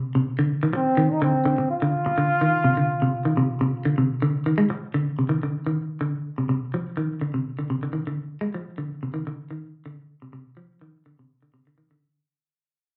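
Afrobeat at 125 BPM with a lightly swung, defiant and intense feel, heard as a live gig through the venue's PA in a club reverb, where a dark, clean semi-hollow electric guitar plays arpeggios soaked in lush chorus and slapback echo over F5 and then a rootless F7(no3), while a punchy trombone with vibrato states a pop-style solo melody from 0.8 to 4.1 seconds, also with slapback echo, before the excerpt fades out from 4.6 seconds.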